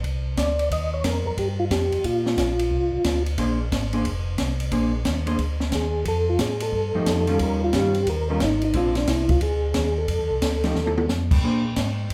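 A bluesy, greasy soul jazz organ trio swings at 179 BPM in Bb mixolydian, heard in a short passage cut from a longer piece. A round, dark tonewheel organ carries the bass line throughout, its key click audible through a slow rotary speaker, while a compact cocktail drum kit sits dry and up front with a high-tuned snare, punchy kick, hi-hat, ride, crash and toms. A second, flute-like tonewheel organ takes the melody from 0.4 seconds, its percussive second-harmonic attack colored by chorus vibrato and the slow rotary, pausing briefly before returning at 5.7 seconds. A clean, picked hollow-body electric guitar joins the accompaniment at 3.4 seconds with a dusky tone, moving through ninth chords such as Eb9 and F9. A drum fill near 10.8 seconds closes the phrase, and the whole trio is set in a moderate recital-hall reverb that gives it the air of a church or concert hall.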